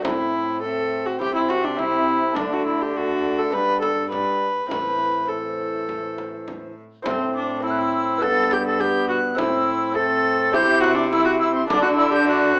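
In a straight 4/4 at 103 BPM, this solemn, courtly renaissance-style consort dance in A dorian sets a distant, pure silver concert flute with crisp attack and vibrato over an up-front, nasal viola of gut-string tone; a mellow, fingerpicked lute with double strings sits in the background, a punchy trombone with a smooth top adds accompaniment, a rich, reedy cello holds the bass, and a frame drum struck with hard hands plays until 12.0 s, all in moderate studio reverb with a small-speaker sound, in a fragment cut from a longer piece.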